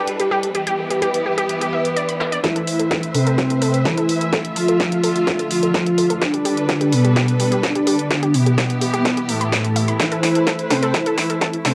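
An airy, dreamy lead sits up front from 2.4 s, its detuned, chorused tone carrying a low second line through this driving, dramatic melodic techno cut at 127 BPM in A minor, while a smooth, warbling portamento lead with vibrato sings the melody. Lush bowed strings hold sustained chords and a bright sawtooth pluck runs arpeggios under a filter sweep, both pumping with sidechain and colored by cassette tape, with tape echo on the pluck. A dry, punchy analog drum machine plays hi-hat and snare throughout, a distant brush kit adds ride and snare only until 2.4 s, and a heavy, layered electronic kick then sits in the background as a build-up and drum fill unfold in a small, wet booth ambience.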